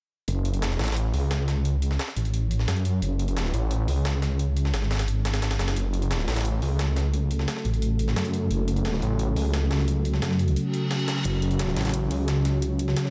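Dark technical drum and bass with an aggressive edge, this brief cut pairs a growling, detuned saw bass pushed up front against a moody, slow-attack analog pad under a filter sweep, while a gritty breakbeat kit with a high-tuned snare drives beneath until a reverse cymbal at 10.7 seconds ushers in a layered electronic hi-hat at 11.3 seconds, all in a light reverb.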